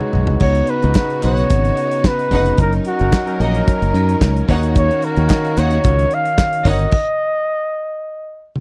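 A straight 4/4 disco groove, driving and danceable, opens on a drum fill from a punchy, mid-forward kit and rolls along with a growly, tube-saturated fingered bass, a barky, overdriven electric piano through a combo amp, crisp handclaps in the background, and lush, distant string and violin sections, while a soft-attack flugelhorn with scooped notes carries the jazz-style melody up front in this dry, close 1970s-style excerpt, until most of the band stops at 6.9 seconds and only the drums and flugelhorn carry on.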